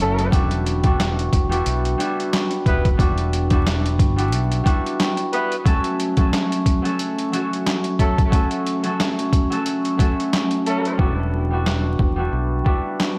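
A light digital ambience and a bed of vinyl crackle frame this dark, tough boom-bap hip-hop cut, taken from a longer piece at 90 BPM in 4/4 with a gentle swing on the 16ths, in E dorian. Up front, a sampler-style trip hop kit, pitched down, compressed and overdriven as if re-recorded in a small room, pairs a thumpy kick and medium-tuned snare with handclaps and hi-hat. A mellow, fingerpicked concert harp rings out as the filtered accompaniment over Em7 moving to F#m, while a smooth-topped jazz horn section adds vibrato-laden stabs doubled in octaves and trailed by tape echo until 10.9 seconds. A deep, round dub bass, dark and direct, drops out at 4.6 seconds and returns briefly when the closing section begins at 11.0 seconds on Em7. In that final stretch the hi-hats fall silent, leaving harp, bass and the remaining drums to carry the groove.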